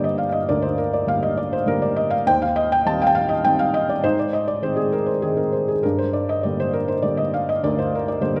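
A wet recital-hall reverb surrounds this short excerpt, drawn from a longer piece, yet the felt-muted upright piano sits up front with a soft, intimate tone. It is a lyrical classical solo in G minor, moving at 101 BPM in 3/4 with a rubato feel that lets the phrases breathe. The mood is moody and cool, and the mellow, muted timbre of the instrument gives the playing a hushed, private quality. The piano ranges from D2 up to A5 across its 8.4 seconds, tuned to A4 = 442 Hz. The harmony passes from Gm to Eb6 at 2.3 seconds and Ab at 4.0 seconds before settling back on Gm.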